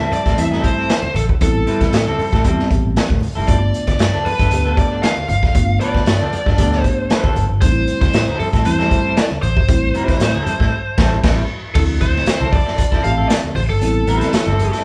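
Hypnotic and cool, this funk excerpt at 116 BPM rides a straight 4/4 groove over Am7, G9 and Dm9 chords, with the whole band captured live in one large studio room on cassette tape. An up-front, raw garage drum kit with dark cymbals, a boomy kick and gritty 12-bit sampler saturation is joined by a round, foam-muted fingered bass, while a clean picked electric guitar, mellow tine electric piano stabs and very quiet, hard-handed congas with a thin skin fill out the pocket. An overdriven, biting lead guitar carries the melody, and a band accent from 10.7 to 11.8 s sets up the shift to a new section at 11.8 s.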